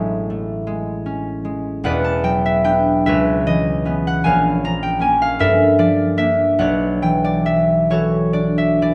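Dreamy and peaceful, this short excerpt from a longer classical work features a solo concert harp in a slow, rubato 6/8, moving at roughly 43-53 BPM in dotted quarters. The fingerpicked harp sounds ringing and up front, spanning from E1 up to Bb5 as it drifts through lush chords: Amaj9, Em9, C#m9, Bbm7, Gm9 and finally Bm11 at 6.6 seconds. A moderate recital hall reverb surrounds the acoustic instrument.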